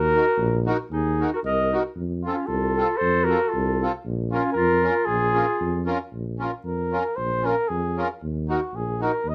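Jolly and bouncy, this fragment of a longer alpine folk dance-band tune in 2/4 is led by an up-front flugelhorn melody with a mellow tone, light vibrato and a classical style, over a tuba bass that is equally up front, gently toned and touched with vibrato. A warm, vintage clarinet plays a second line until 5.9 s, while a reedy, sweet accordion with light tremolo tuning and a band-limited, old-time character fills in the accompaniment up front. The whole band sits in light reverb and plays the same section twice.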